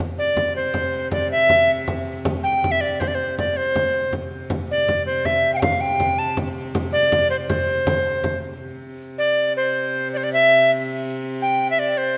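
Rustic and ancient in mood, this short cut from a longer medieval dance in 6/8 sets a bright, reedy alto recorder up front, its pure, tongued tone carrying the melody with a crisp chiff over a low, boxy viola da gamba drone held on a single note with light vibrato and an airy bow. A frame drum played with soft hands adds close, dry percussion until about 8.4 seconds, after which the recorder and gamba continue alone to the end at 12.2 seconds. The whole sits in a moderate stage reverb, with the recorder clearly louder than the intimate, ringing gamba.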